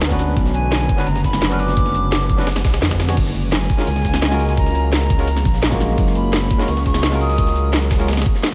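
A hollow, close-miked concert flute carries the melody with vibrato and analog delay over a very quiet, ethereal pad and a deep, rumbling detuned saw bass that sits up front, opening this uplifting liquid drum and bass excerpt in F# major at 171 BPM. A barky tine electric piano with subtle chorus adds accompaniment, while an overdriven, knocking electronic kick plays alongside a layered garage kit of cracking snare, crisp hats, ride, crash and shaker, re-recorded in a large room, with a gritty sampler-style breakbeat kit tucked in the background. The harmony moves from Bmadd9 to F#maj9 at 3.2 seconds under light digital reverb.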